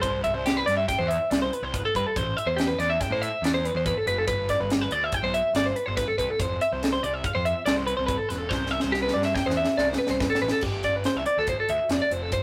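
A bright, clean twelve-string electric guitar leads this bright, playful math rock and midwest emo fragment, picking compressed arpeggios up front in the upper register throughout. Beneath it, a fuzz-drenched picked electric bass adds overdriven growl from low in its range, while a crisp fusion drum kit with a punchy kick, high-tuned snare, hi-hat and bright crash cymbals keeps a straight feel in 5/4. The harmony moves through Cmaj7, Am7, G6 and Fmaj7 before returning to Cmaj7, where a drum fill runs from 8.5 to 10.6 seconds. At 10.6 seconds the music shifts into a new section on a G9sus4 chord. A moderate stone-room reverb and a rough rehearsal-room recording give the whole a lively, unvarnished character, cut from a longer piece.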